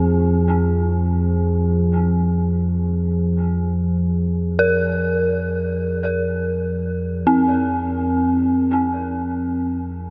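A deep, rumbling drone and an eerie, detuned synth bell open this dark ambient piece together, floating in free time with a vast, ominous mood. The drone sits up front, its slow attack and long release giving it a heavy, sustained presence, with its own built-in reverb adding depth beneath everything. The synth bell, also up front, plays arpeggios with an inharmonic FM shimmer. Its fast attack decays into long tails thickened by chorus and a diffuse ambient delay. Farther back, a bronze singing bowl rings with a smooth, meditative beating until it falls away at 7.3 seconds, leaving the drone and bell to carry on to the close at 10.1 seconds. The whole mix is dreamy and soaked in a huge reverb with an 8.1-second decay, coloured by a cassette-tape haze, and the passage feels cut from a longer work.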